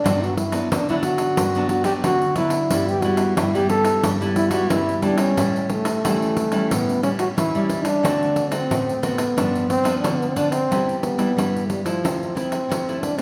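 Set in a reverberant recital-hall space, this lively, playful samba-choro fragment at 90 BPM in G major features an up-front mellow trombone carrying a jazz-style solo melody with light vibrato and scooped notes, a warm, fingerpicked classical nylon-string guitar accompanying through chords such as Gmaj7, A7 and D7, and a jingly, close, dry pandeiro struck with hard hands, before the harmony moves to Cmaj7 at 10.7 seconds.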